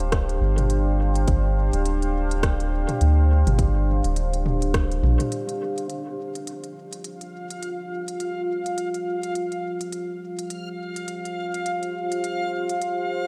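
A moody, detuned sawtooth pad drifts through this deep, spacious ambient dub excerpt and takes on a filter sweep from 5.9 s, while a round, tube-saturated sub bass and a tight electronic kick anchor the opening and fall away before that change, smooth hats, rim clicks and toms with dub echo tick along underneath, and a reversed, granular, bright texture swells in dreamily at 7.2 s.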